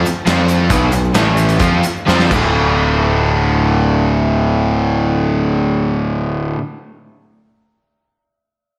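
Up front, a dark, round fuzz bass drives this gritty, swaggering classic rock snippet alongside a bright distorted guitar riff, a phased crunchy guitar in the background and a very quiet double-tracked crunchy guitar, while a big, mid-forward acoustic drum kit with a tight kick and a grainy egg shaker play through the opening slowdown, the drums ending with a fill by 2.4 seconds, all set in a lush hall reverb that gives an arena-sized sound.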